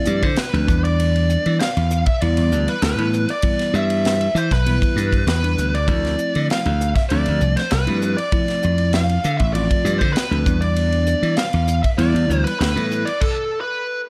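Driving and slick, this electric jazz fusion excerpt at 98 BPM in straight 4/4 sets a biting, overdriven lead guitar melody up front over a bell-like tine electric piano with phaser, a punchy slap bass and a crisp, airy drum kit with a high-tuned snare, all moving between Dm7 and Em7 in a studio reverb before a stop at 13.2 seconds, after which the drums fade out by 13.4 seconds and the guitar carries on until 14.0 seconds.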